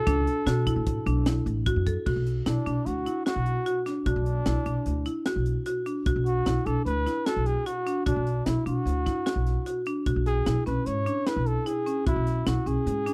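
Driving along in a straight 5/4 at 150 BPM, this tense progressive instrumental in B dorian is cut from a longer piece and rides on a crisp fusion drum kit, with a punchy kick, a high-tuned snare, hi-hat and crash sounding gritty and saturated in a pumping small room, under a pizzicato upright bass whose thumpy gut strings sit up front. Hard-mallet marimba on padauk bars plays bright, dry, close-miked arpeggios with a woody bite, while a dark, breathy trumpet carries the intimate, jazz-style solo melody with light vibrato and a soft, whispered attack. The harmony moves from Dadd9 to Bm at 2.1 seconds and then to E6/B at 10.1 seconds, with the tuning set to A4 = 436 Hz.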